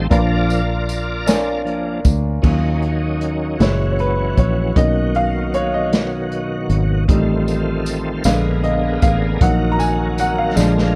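A dry recording with little reverb opens this 11-second cut from a longer slow gospel piece in Eb minor, moving in a 6/8 lilt at 52 BPM with a solemn, fervent mood. A bright, shouting tonewheel organ holds sustained chords throughout, lightly overdriven through a slow rotary speaker with chorus vibrato and audible key click, and it takes the lead as soloist for the first 2.4 seconds. From 2.4 seconds the clear, slightly worn grand piano steps forward to solo over changes that run from Ebm7 through Gb7, Bmaj7, F7/A and Bb7b9 before settling on Ebm/Bb. Beneath them a round, foam-muted fingered electric bass sits up front, while a swinging big-band drum kit with a boomy kick, medium-tuned snare, hi-hat and crash sounds distant and roomy with a rolled-off top. A jingly tambourine adds sparkle from 0.5 to 2.4 seconds and again from 7.5 seconds, and a drum fill closes the passage at 10.6 seconds.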